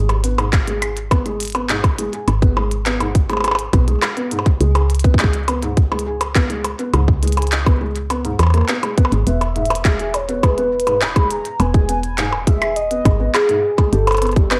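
Cerebral and eerie, this IDM fragment is cut from a longer piece and moves in a straight 4/4 pulse. A soft, felt-muted upright piano plays arpeggios throughout, its mellow, intimate tone touched with tape echo and the audible noise of its action, while a woody, round FM bass with a fast, decaying attack sits dark underneath. A glitchy kit of clicky hi-hats, handclaps and percussion blips enters at 0.1 s, and an up-front electronic kick drum joins at 0.5 s; both carry cassette-tape grit and the air of the large room they were re-recorded in. At 9.3 s a velvety synth lead takes the melody, its smooth sawtooth-and-triangle unison tone wave-folded and sustained, shimmering with chorus and vibrato. The track sits in a modest booth ambience with the character of a home cassette recording.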